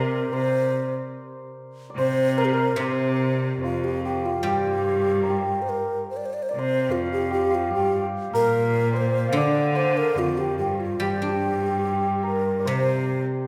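A breathy, close-miked, unsteady low xiao with vibrato carries the melody from the start of this festive, pastoral excerpt of Chinese traditional chamber music in C shang mode, moving rubato around 73 BPM in 2/4, while a shimmering hammered dulcimer and a rich, biting bowed cello up front play second lines over silvery fingerpicked guzheng accompaniment, all set in a wet recital-hall reverb.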